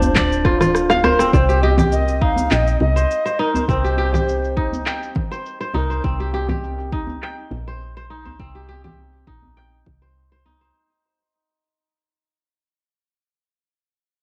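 Hypnotic and meditative, this organic downtempo excerpt sets a crisp, ringing, fingerpicked kora up front beside an airy Native American-style cedar flute with vibrato and chiff that carries the melody until 6.0 seconds, over a round, dark woody FM bass with sidechain pumping, a deep electronic kick, produced electronic shaker, handclaps, rim click and congas, and a soft-handed djembe in the background, with cassette-tape colour on the flute, kora, kick and percussion, moderate room reverb, and a drum fill from 0.5 seconds before filter sweeps on the drums and bass accompany a fade-out from 1.3 seconds.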